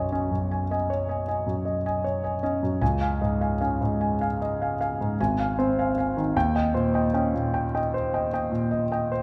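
A concert grand piano opens alone on a Cb69 chord, up front and intimate, its deep bass and audible action noise giving this brief impressionist fragment a hazy, luminous glow. The playing moves freely in 9/8 with rubato, drifting through Dbadd9 at 2.8 seconds and on to Ab6 and Eb6 chords. A moderate recital hall reverb softens the natural tone across its nine seconds, which are cut from a longer piece.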